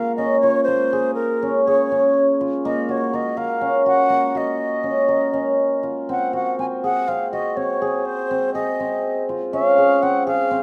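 A bright, airy wooden baroque flute and a mellow, shimmering cimbalom open together at 0.0 s in this pensive yet urgent contemporary instrumental passage, cut from a longer piece and moving in a straight 7/8 at 244 BPM counted in eighths. Up front, the flute carries the melody with tongued notes and an unsteady vibrato, while the hammered, ringing cimbalom plays arpeggios beneath it through Bbm7, Ebm7/Bb, Ab7 and Dbmaj7. Close, detailed microphones capture both instruments within a moderate recital-hall reverb.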